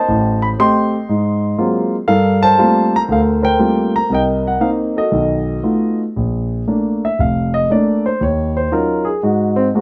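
Lightly reverberant, this brief solo jazz excerpt features a warm, deep-bassed concert grand piano playing up front, swinging at 119 BPM in 4/4 with a rubato feel, in Bb major tuned to A4 = 438 Hz, as rich chords such as Am7b5, Ab13 and Gm11 move into a new section at 6.2 s that lands on Bbmaj7 before drifting through Ebm9 to Ab7.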